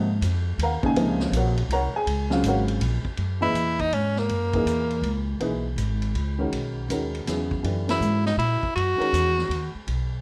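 A slightly detuned, woody upright piano and a pizzicato upright bass open this searching, spiritual modal jazz excerpt at 161 BPM in a swung 3/4, joined almost at once by a vintage drum kit with dark cymbals and a punchy kick under light reverb. From 3.2 s the music settles into F# mixolydian, and an edgy, forceful tenor saxophone enters up front with vibrato and scooped notes, set in a dark, warm production. A band accent lands at 7.8 s, and the saxophone returns for a second phrase just after it as the piece is cut.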